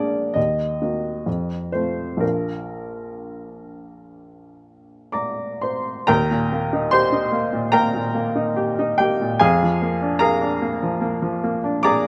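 Hopeful and passionate, this romantic character piece for solo piano moves with free rubato at 61-76 BPM in 4/4, opening in Bb major and shifting to Eb major at 6.1 s. A bright upright piano carries everything alone, ranging from Bb1 to D6 with a brilliant, woody, open tone and short sustain, placed up front under close, detailed microphones and light reverb. Tuned to A4 = 436 Hz, the brief passage is cut from a longer piece, and its second section reaches a Bb7/F chord at 9.4 s.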